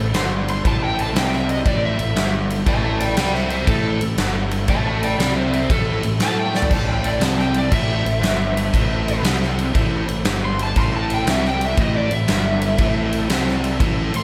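A swung 4/4 groove carries this brooding, smoky blues rock and southern rock clip, where a huge arena drum kit with a punchy kick and medium-tuned snare sits up front beside a fuzzy, punchy picked bass and a biting, double-tracked overdriven guitar riff, while a bright slide guitar with slapback echo rides on top in a solo, a gritty tonewheel organ with slow rotary speaker holds sustained chords in the background, and a drum fill lands at 6.5 seconds, all in a big arena sound with lush hall reverb.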